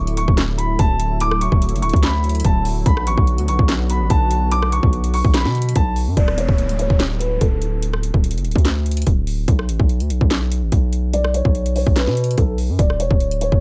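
A dark, mellow concert grand piano melody opens this brooding half-time trap excerpt at 145 BPM in B minor, set over a smooth, detuned sawtooth pad with chorus and a heavy, saturated 808-style bass, moving from Dadd9 to Bm. The up-front trap kit brings a hard-clipped kick, sharp snare, metallic hi-hats, handclaps and rim clicks, while the pad drops out at 6.1 seconds. A faint electronic downlifter then arrives as the harmony falls away and a filter sweep colours the boxy, long-sustaining piano, which pauses and returns at 11.1 seconds through a digital delay before settling on Dsus2, all in a dry sound.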